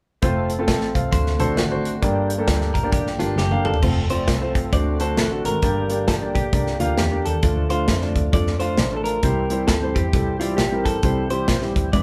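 Uptempo gospel at 133 BPM in F major with a swung 4/4 feel and an uplifting, hopeful mood, carried by an intimate, up-front grand piano with audible action noise, a lightly overdriven tonewheel organ holding sustained chords in the background through a slow rotary speaker and chorus vibrato, a bowed double bass with a soft, airy, nasal tone, and a tight acoustic drum kit that adds a brief fill, while a bright, twangy picked electric guitar plays a second line from 1.1 to 3.8 seconds and a compressed clean electric guitar takes the melody from 3.2 seconds, the band sharing one live room with light reverb.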